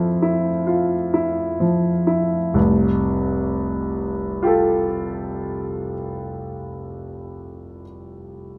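A clear, smooth grand piano with a vintage character sits up front in this brief, serene impressionist solo piece in F major, played with rubato in a slow 3/4 at 32 BPM and spanning F1 to F6. The opening moves from an Fmaj7 chord while slowing down over the first 2.5 seconds, then settles onto Fadd9 for a second passage that runs to 8.1 seconds. A moderate stone-room reverb gives the hazy mood a gentle, resonant space, and the recording is cut from a longer piece.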